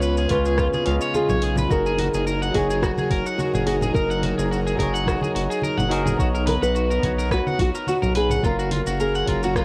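Sunset chillout at 107 BPM with a relaxed, smooth swing, where a dark, fingerpicked nylon-string guitar carries the melody over a barky, lightly overdriven tine electric piano, an airy, breathy chorused pad in the background, twangy arpeggios from an electric guitar at the edge of break-up through analog delay, a round, deep analog bass up front, and a layered deep house kit of hi-hat, rim click and shaker joined at 0.3 seconds by a soft electronic kick and background congas, all moving from C#7 through F#69 and Bmaj9 to F#maj7 in a cassette-worn home recording with light reverb.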